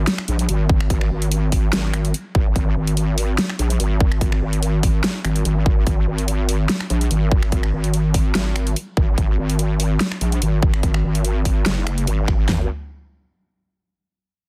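A dense, heavily limited master with almost dry ambience carries this heavy, aggressive wobble dubstep drop, cut from a longer piece and set in a swung half-time feel, where a saturated, detuned square-and-sine wobble bass with resonant chorus and overdrive sits up front from the start, joined at 0.1 s by a tape-warm dubstep kit of finger snaps, bright hi-hats and a huge snare, and at 0.7 s by an overdriven big-room kit with a punchy kick, toms and a huge snare.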